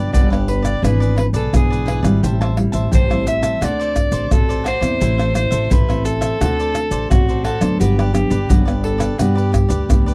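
Festive and lively, this samba and choro passage in straight 4/4 is cut from a longer piece. A soprano saxophone carries the melody in a jazz style, its tone warm with light vibrato and a distant, roomy quality. Alongside it, a crisp, bright cavaquinho is picked while a full-bodied nylon-string guitar is fingerpicked with a deep classical character. A woody, growly upright bass, played pizzicato on steel strings, gives a dark, thumpy bottom end. Maracas, surdo, pandeiro and tamborim come in at 0.1 s, sitting up front with a tight surdo and hard hands. The sound is that of a dry, close 1970s-style studio with light reverb, and the harmony moves from Gmaj7 through E7/G#, Am7 and D7 before settling back on Gmaj7.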